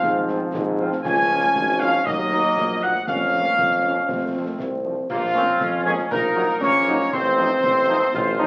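Heard through the crackle of a very old 78 rpm record and a wet studio reverb, this resolute, martial military-style march for wind band moves at 118 BPM in 2/4 in Bb minor, cut from a longer piece. A clear, close-miked trumpet section carries the melody up front with light vibrato, over tight woodwinds in the background, bright sustained trombone chords, a clear vintage tuba bass, and snare, bass drum and dark-toned clash cymbals from a small room. Distant, very quiet French horns join at 0.3 seconds, a roomy euphonium adds a second line from 3.6 seconds, and a pure, wooden piccolo with a crisp attack enters at 5.1 seconds as the second section begins.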